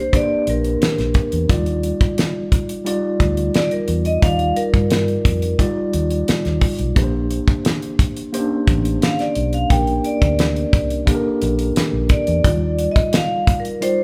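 A vibraphone with medium hard mallets carries the melody from the first moment, metallic and ringing with a slow motor vibrato and a boxy small-room color, over a mellow, clean tine electric piano that sits up front through its built-in speakers, in a smooth, romantic, lush 1970s-style soul groove at 88 BPM in Bb major. A dry, acoustic 70s drum kit joins at 0.1 seconds with a fat snare and tight kick placed up front, while a dark, round, punchy foam-muted electric bass holds the low end until 12.9 seconds. The band plays together live in one room with light reverb, moving between Bb69 and Ebmaj9 chords in this cut from a longer piece.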